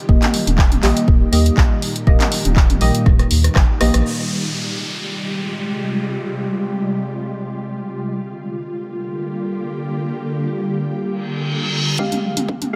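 A deep, tape-warmed electronic kick drives this earthy afro house excerpt at 121 BPM in F dorian, joined by a round, dark analog bass, a deep house kit of dark hats, handclaps, rim clicks and toms re-recorded in a small room, and soft, detuned chord stabs with chorus and tape echo, all but the kit pumping against the kick. The groove stops at 4.0 seconds after a drum fill and band accent, leaving an ethereal, airy pad of slow-attack sustained chords, bathed in ensemble chorus and its own reverb, to float over Fmadd9 and Gm7 while an up-front downlifter sounds. A reverse cymbal then brings the kick, bass, kit and stabs back at 12.0 seconds with another fill, as a riser climbs to the end.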